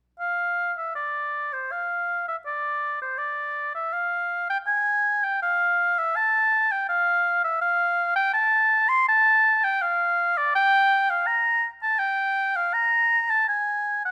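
A warm solo oboe opens at 0.2 seconds with a radiant, flowing baroque-style fantasia in F major, its light vibrato sitting up front between C5 and C6 in a rubato 3/4 at 82 BPM, caught by close, detailed microphones in light reverb until this fragment of a longer piece breaks off at 14.1 seconds.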